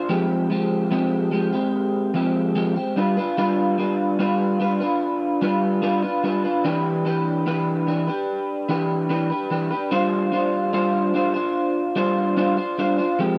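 A rough home-demo sound with light reverb frames this short laid-back, dreamy indie pop excerpt at 73 BPM in a straight 4/4. A lone electric guitar through a small old amp plays up front from start to finish, its picked tone warm, slightly broken-up and compressed, with analog chorus and a warbly pitch drift. It moves through Fmadd9, G7, Em7 and G7sus4 across roughly 13 seconds, ranging from E3 to C5.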